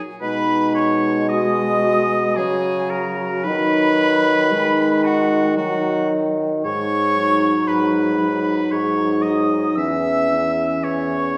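Tender and lyrical, this slow romantic wind-quintet movement in B major sways in a rubato 3/4 at 56 BPM, with the pure, softly vibrating silver flute carrying the melody from the background while the clear, up-front oboe sings a second line, a warm clarinet and a French horn with light vibrato fill the accompaniment, and a mellow bassoon anchors the bass up front, all set back in a reverberant recital hall as the harmony moves from B through B/D#, G#m7 and C#m/E.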